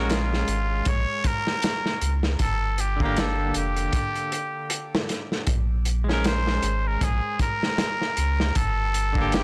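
A muted trumpet opens this dark, smoky trip hop fragment together with semi-hollow electric guitar and a soft dub sub bass, and a crunchy breakbeat kit joins at 0.1 seconds. The trumpet carries the melody up front in a jazz style, its straight mute giving a nasal, raspy tone with light vibrato and a growling edge, trailed by tape echo. Beneath it the guitar plays clean, bright picked accompaniment with a hollow-body ring, shimmering through tremolo and its own tape echo. The sub bass is deep and round, a triangle and square wave with a fast attack and long sustain, thickened by tube saturation. The drums sit close and gritty, with a tight kick, a medium-tuned snare and hi-hat swung on the sixteenths, their top end rolled off. The whole mix is blown-out and overdriven in a small room, moving slowly between Bbm7 and Gm chords before the cut at 9.4 seconds.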